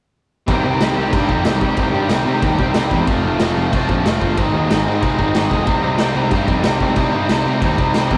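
Punk rock at 185 BPM in 4/4 with a straight feel, this short excerpt in C minor sounds aggressive and angry from the first beat. All four parts enter together at 0.5 s and drive through to 8.2 s, moving from Cm to F, then Ab, and back to Cm. Up front, a cranked stack guitar plays an overdriven, picked riff with a bright edge, while a second distorted electric guitar plays its own riff much further back, very quiet in the mix. A fuzz picked electric bass adds a growly, overdriven low end, and a raw garage drum kit pounds out crash cymbal, punchy kick and a medium-tuned snare with a gritty, saturated tone, a rolled-off top and a pumping stone-room sound. The whole take has the rough feel of a rehearsal-room recording with light reverb.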